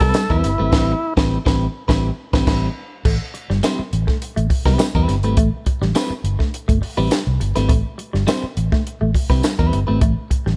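An overdriven tonewheel organ, thick and gritty with key click, vibrato and third-harmonic percussion, sits up front and leads the opening of this cool, sly funk excerpt with a brief solo melody that sounds until 1.1 s. A band accent runs beneath that opening before the groove settles into a new section at 3.1 s, all in a straight 103 BPM 4/4 in A minor on an Am9 chord, tuned slightly low to A4 = 436 Hz. A vintage muted fingered bass, round, amped and foam-muted, anchors the low end alongside a compact cocktail drum kit with a punchy kick, high-tuned snare, dark cymbals and hi-hat, both placed up front. A clean, compressed, picked electric guitar fills in the accompaniment, while a second fingered guitar at the edge of break-up plays a twangy, slightly broken-up riff through a phaser. A jingly tambourine sits in the background in a small room, and the overall sound is dry and dark-topped.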